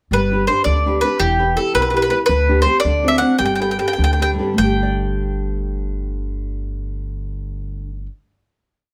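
This complete Italian folk serenade in G major is romantic and sunny, moving in a straight 6/8 at roughly 98-110 BPM (dotted quarters) and tuned slightly below standard pitch, with A at 438 Hz. Up front, a picked, double-strung mandolin carries a motif-based melody in sentence-like phrases with a woody tone. A fingerpicked classical nylon-string guitar offers a warm oompah of bass notes and chord figures, while a dark pizzicato upright bass on steel strings plays root and fifth on the main beats. The tune passes through G, Em, G/D and D7 before slowing from 2.3 seconds into a Gadd9 final chord held from 4.6 seconds, all set in a moderate studio reverb.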